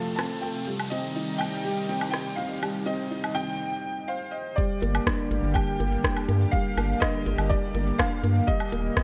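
Hypnotic and melancholic, this excerpt of piano and strings electronica moves at 123 BPM in G minor, opening with a build-up where two felt-muted upright pianos, one dark with audible action noise carrying the melody and a thinner-felted one playing a riff, both bathed in delay and shimmer reverb, sit over a lush, detuned unison pad with chorus, phaser and sidechain pumping, a round, nasal analog bass, and a rising electronic sound effect. Smooth hats, rim click and woodblock from an overdriven, roomy electronic drum kit join at 0.2 seconds, and after a brief break the drop arrives at 4.6 seconds, where a compressed, thumpy, muffled kick enters as the harmony settles on G minor.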